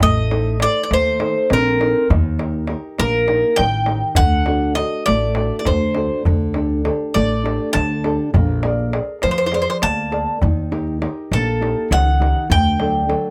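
Brooding and moody, this short Greek folk excerpt moves at 202 BPM in 7/8, with a bright, metallic bouzouki carrying the melody up front over warm, thumb-plucked nylon-string guitar, a growly, woody upright bass played pizzicato, and a crisp, deep metal-shell darbuka, all heard together throughout about 13 seconds in a moderate booth ambience.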